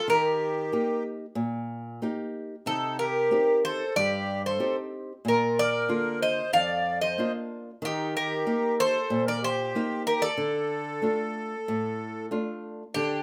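Bittersweet and moody, this Greek folk excerpt at 93 BPM in D phrygian puts a metallic, double-strung bouzouki melody with some octave-doubled strings up front, joined by a reedy, sweet accordion second line with light tremolo tuning and plate reverb, and a small, fingerpicked nylon-string guitar accompaniment sitting close from 0.1 seconds, inside a wet studio room with a rough home-demo mix.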